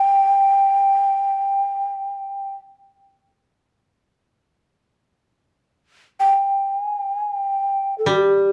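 Austere and solitary, this short fragment of Japanese traditional chamber music unfolds in free time, tuned to A4 = 442 Hz. A breathy, mellow shakuhachi carries the melody from the opening moment through 8.5 seconds, ranging from G4 to G5 with a straight tone and soft attacks. Its bamboo voice sounds hollow, placed up front in the mix. A koto enters only at 8.1 seconds, sounding G3 with a dry, woody pluck from fingerpicks just before the passage is cut off from the longer piece. Close, detailed microphones and light reverb give the recording an intimate presence.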